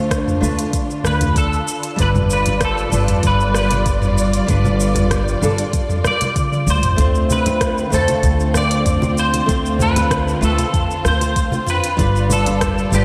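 Bathed in a lush hall reverb with a 2.5-second tail, this dreamy sunset chillout excerpt drifts at 96 BPM in a straight 4/4, smooth and warm in mood, in D dorian over a Dm7 to G7 progression. A fingerpicked flamenco guitar carries the accompaniment through a tape echo, while a dark, bowed studio string section holds sustained chords with vibrato and a silky top. Underneath, a woody, growly pizzicato upright bass sits loudest in the arrangement, thumpy and dark. A soft electronic kick and a produced R&B kit with smooth hi-hats, rim click, shaker and toms both carry a tape-warm sheen from being re-recorded in a large room, joined at 0.4 seconds by very quiet, close and dry congas played with soft hands. From 1.1 seconds a bright, twangy clean electric guitar takes the melody up front, picked and coloured by ensemble chorus and tape echo. A drum fill at 6.4 seconds leads into the second section at 7.0 seconds, where the chords return to Dm7 before moving again to G7.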